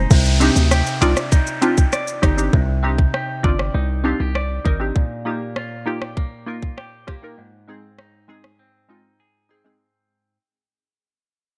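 A glassy wavetable pluck sits up front in this short dancehall excerpt, its detuned unison tone warbling through a chorus effect with a crystalline, vintage edge and a filter sweep over quick, decaying notes. Set in C minor at 99 BPM with a straight 4/4 feel, the mood is hypnotic and tough, moving from Cmadd9 to Ebadd9/Bb and then Ab. A semi-hollow electric guitar plays clean, bright, compressed arpeggios beneath, while a hard-hitting 808-style bass delivers punchy, heavy sine tones with a noise layer until 4.9 seconds. The electronic island pop drum kit, up front, combines a tight kick, warm hi-hats, rim clicks and shaker before dropping out at 8.6 seconds for a brief break. An electronic downlifter sweeps through the opening seconds, the whole passage fades out across its length, and a digital ambience keeps the top end below 10.6 kHz.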